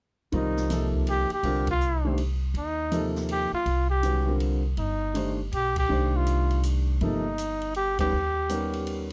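Hypnotic and searching, this modal jazz excerpt swings in 3/4 at 162 BPM in C dorian, moving from Cm11 to Eb7b13 near the end. Up front, a breathy, dark-toned trumpet carries the melody with light vibrato, over a warm concert grand piano with deep bass and a woody, thumpy pizzicato upright bass on gut strings. A softer open jazz kit adds dark cymbals and a boomy kick as the band hits accents at 1.6, 5.7 and 7.9 seconds, all captured dry and close with fine detail.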